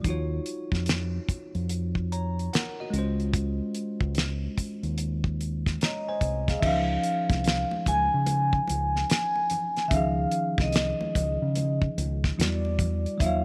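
A mellow, airy vibraphone played with soft mallets takes the melody at 5.9 s, its slow motor vibrato and slapback echo floating over a smooth, relaxed neo-soul R&B groove with a gentle sixteenth-note swing. Beneath it, a dry 70s drum kit with a fat snare and tight kick sits up front beside a dark, round dub-style fingered bass carrying tube saturation, while a bright, clean tine electric piano moves through Ebm9 and Dbmaj9 before touching Em9 near the end. Very quiet, ringing congas join at 6.6 s, and light reverb rounds out this fragment of a longer piece.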